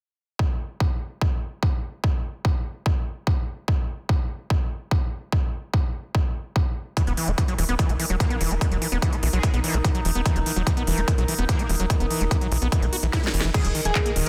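Psychedelic trance at 146 BPM in a straight 4/4, psychedelic and driving, this short cut from a longer piece opens with a punchy, tape-warm electronic kick standing up front on its own from 0.4 seconds. At 7.0 seconds the track fills out: a squelchy, gritty acid bass riff with resonant filter sweeps, distortion, dub echo and sidechain pumping arrives alongside a techno drum kit of cracking snare, smooth hi-hats, handclaps and crash cymbal, while a tight sawtooth sequencer bass with a wave-folded filter pluck drives the low end. A slow-attack drone of moving overtones with chorus, built-in reverb, 12-bit sampler grit and pumping holds sustained chords over an E5 harmony, and a metallic FM wobble bass sits very quietly beneath as a second line. After a drum fill, a thick, detuned unison lead with phaser, vibrato and dub echo enters at 13.5 seconds on Ab4 as the harmony moves to Eb5. The mix carries light reverb and a dense, heavily limited modern master.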